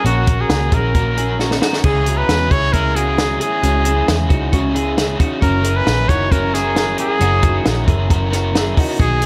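A clear, up-front trumpet with vibrato and a slapback echo carries the melody through this youthful, breezy jangly indie pop excerpt at 134 BPM, over a bright, twangy twelve-string electric guitar playing arpeggios with subtle chorus, a crunchy overdriven guitar with harmonic tremolo, a round, foam-muted vintage bass and a dry compact cocktail drum kit with a high-tuned snare, whose fill from 1.4 to 1.8 seconds leads the move from F#/A# into C#m and later F#7, all in light reverb with studio ambience.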